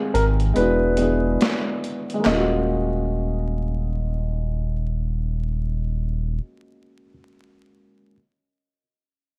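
Lo-fi hip hop in Eb minor at a slow 71 BPM with a swung sixteenth feel, this short, reflective and nostalgic cut from a longer piece opens on a filtered break. A soft, felt-muted upright piano carries the melody with audible action noise and tape echo, while a dark, woody upright piano accompanies over Fm7, E9 and then Ebm11 at 2.2 seconds. A deep, round sine sub bass sits up front, and a gritty, pitched-down boom bap drum kit of handclaps, hi-hat and a high-tuned snare plays only until 2.5 seconds, all under light reverb and vinyl crackle.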